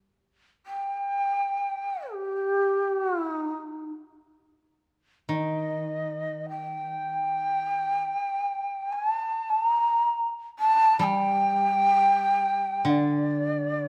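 Japanese traditional chamber music in free time and G hirajoshi, austere and meditative, tuned slightly high to A4 = 441 Hz. A breathy shakuhachi carries the melody from 0.7 seconds, its end-blown bamboo tone marked by chiff, vibrato, a soft attack and an unsteady quality. At 5.3 seconds a mellow, woody koto played with fingerpicks joins in a low accompaniment beneath it, and the pair sit in a moderate recital-hall reverb through the end of this short excerpt.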